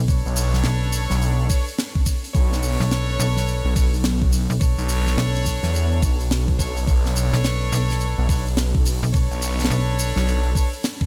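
A snappy, metallic-edged FM bass opens this funky, swaggering glitch hop excerpt, sitting up front on a low B with tube saturation, and a swirling, thick detuned saw bass joins it at 0.3 s through a phaser, moving between B1 and E2. At 106 BPM in 4/4, with a 61% swing on the sixteenths, the groove rests on a layered, knocking electronic kick with a tape-warm character, placed forward in the mix. A dry, polished funk kit supplies hi-hat and a high-tuned snare, while a grainy, mellow shekere sits in the background. A clear horn section delivers jazz-style stabs from D4 to C#5 with light vibrato, pumped by sidechain and trailed by a diffuse ambient delay. The whole passage hangs on a single Bm9 chord in B minor, tuned to A4 = 441 Hz, and the recording carries a light reverb with a small room ambience.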